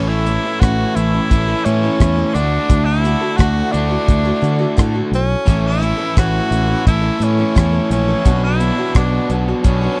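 A damped 70s drum kit with a tight kick, hi-hat and rim click sets a straight, mid-tempo 4/4 groove at 86 BPM from 0.3 seconds in this hopeful, nostalgic folk and heartland rock fragment in A major, where a round, punchy fingered electric bass sits up front, a boxy parlour acoustic guitar is picked in the background, a bright, double-tracked cranked stack guitar plays an overdriven riff with spring reverb, and an edgy tenor saxophone carries the melody with forceful vibrato and scooped notes over chords moving from A to Dadd9, back to A and on to Bmadd9, all captured in a dry, close 1970s-style studio sound.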